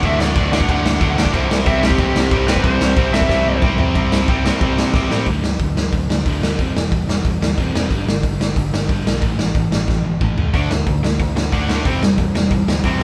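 Rowdy and rebellious, this 13-second punk rock cut at 182 BPM in D mixolydian bursts out with a dark, overdriven lead guitar melody with delay that drops away at 3.6 seconds, while a bright, crunchy guitar riff up front cuts out at 5.3 seconds and returns at 10.5 seconds over a hollow-body semi-hollow guitar riff, a round, amped picked bass in the background, and a gritty, punchy garage drum kit with quick fills, all played live in one room with light reverb.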